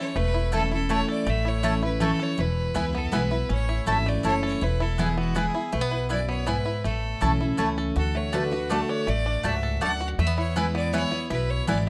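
A bright, twangy banjo and a clear, biting fiddle with tape echo open this lively, virtuosic bluegrass excerpt in 3/4 over full-bodied picked acoustic guitar with a touch of finger squeak, joined at 0.2 seconds by a thumpy, dark upright bass up front and at 0.5 seconds by woody, double-strung mandolin stabs, caught by close, detailed microphones in light reverb as the chords move between A and E before turning to D and E.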